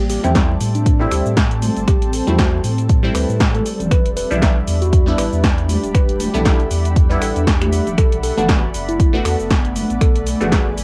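Late-night and smooth, this deep house excerpt at 118 BPM in A dorian swings gently over Am7, Em7 and Bm7 as a clean tine electric piano carries the melody through cassette tape and analog delay, while a nostalgic, warbling chorused pad and a background ethereal pad breathe with sidechain pumping, a round sine sub bass anchors the low end, a muted, detuned dub chord stab flickers through phaser and delay, a punchy analog drum machine ticks out finger snaps, hi-hat, shaker and snare, distant high-tuned congas ring from a large room, and an overdriven electronic kick drives it all under a lo-fi cassette haze of vinyl crackle and light reverb.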